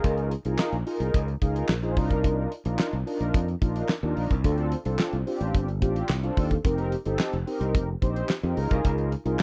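Early-eighties boogie funk in a slick, danceable groove, this short cut pairs round, detuned synth brass with chorus and a filter sweep, a growly, punchy fingered electric bass, and a damped seventies drum kit with a fat snare, tight kick, hi-hat and handclaps, all caught in a dry, close studio sound as the chords move from Db69 through Cm11, Dm7 and F7sus4.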